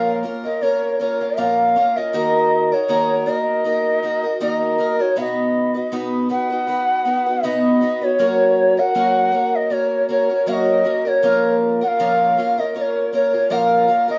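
Acoustic pop with a wistful, tender mood and a lightly swung sixteenth-note feel, this short excerpt runs 14.2 seconds with both parts playing throughout. A breathy bass bansuri carries the melody up front, its bamboo tone soft in attack with vibrato and rolled-off highs, while a picked twelve-string acoustic guitar accompanies with a boxy, shimmering, octave-doubled sound. The pair sound like they are playing live together in a small room, wrapped in a wet reverb.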